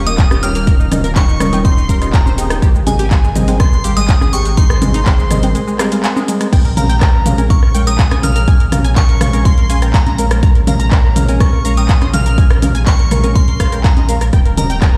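A glassy, crystalline synth bell carries the melody through this dreamy, bittersweet progressive house excerpt at 123 BPM in Bb dorian, joined in the background by a clear studio violin section with light vibrato playing a second line, both trailed by dub echo, while a punchy, up-front electronic kick and a thick, saturated sub bass pumping with sidechain anchor the groove. A tight, nasal sequenced synth spins arpeggios, deep mellow chord stabs with chorus and phaser move through Eb7, Abmaj7 and Bbm7, and a very quiet evolving wavetable pad sustains underneath. A tape-warm pop drum kit with metallic hats, handclaps and shaker is joined by an analog drum machine's congas, rim clicks and toms, and a brief break at 5.6 seconds leads back into the drop at 6.5 seconds, all sounding as if played on a big system in a bare stone room.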